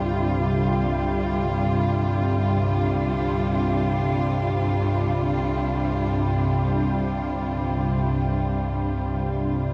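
A huge, wet reverb with a long 7.4-second tail surrounds this short dark ambient drone in free time, cut from a longer piece, its mood desolate and dark. Up front, a calm organ-like drone of detuned sine tones holds low notes with a slow attack and long release, thickened by ensemble chorus and its own reverb. A close, shadowy cello section sustains bowed chords with expressive vibrato over a Csus2 harmony, fading out across the full 9.7 seconds.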